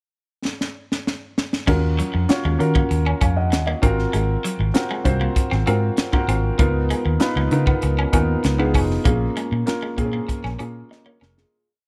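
A dark, round, foam-muted fingered electric bass sits up front with an agile, syncopated, amped line, anchoring this slick and bittersweet piece of polished 1980s jazz-funk pop. A crisp fusion drum kit, set in a pumping small room with a high-tuned snare and tight kick, opens with a fill at 0.5 seconds before settling into a sixteenth-note studio groove. At 1.7 seconds an intimate grand piano with audible action noise joins with syncopated rootless chords, grace notes and short fills, while a clean, scooped electric guitar picks a muted single-note line lower in the mix; both carry a subtle chorus as the verse moves through Ebm7, Ab13, Db13 and Bbm7 in studio reverb, fading out from 9.1 seconds.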